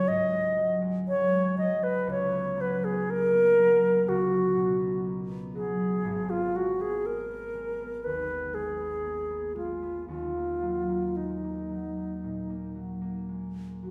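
Hazy and mysterious, this short impressionist classical excerpt in Eb minor drifts at a rubato 54-62 BPM as a pure, vibrato-laced alto flute, close and up front with a soft attack, carries the melody over a ringing, thumb-plucked concert harp low in the register, the recording heard from further back in a recital hall whose 1.3-second reverb lends a wet halo while the harmony moves from Dbsus4 through Abm to Ebmadd11.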